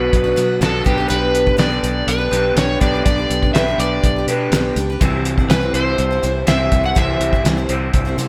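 A straight 4/4 groove at 123 BPM from a cloth-damped, thuddy drum kit with a fat snare and tight kick, alongside a round, foam-muted fingered bass, carries this nostalgic, warm folk rock and heartland rock excerpt from Bm through G/B to C, where an up-front overdriven slide guitar sings the melody with slapback echo over a bright dreadnought acoustic picked in the background and a dark, slightly broken-up riff from an electric guitar through a small old amp steeped in spring reverb, until a very quiet tonewheel organ with key click and rotary speaker slips in with sustained chords at 5.0 s, all set in a recital-hall reverb for a big arena sound.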